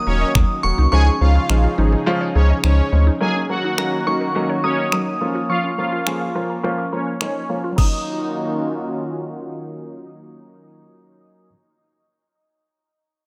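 Bittersweet yet energetic, this dance-pop passage opens under a filter sweep, with a crystalline FM synth bell and a smooth, detuned supersaw carrying the melody over a vintage, warbling analog pad and a mellow, woody synth pluck spinning arpeggios in the background. A present baby grand piano adds accompaniment, a round sine sub bass sits up front until 3.1 s, and an electronic R&B kit of knocking kick, finger snaps and crash cymbal drives the groove until 7.9 s. Sidechain pumping breathes through the pad, pluck, supersaw, piano and bass, while tape echo trails the bell, pluck and supersaw inside light reverb.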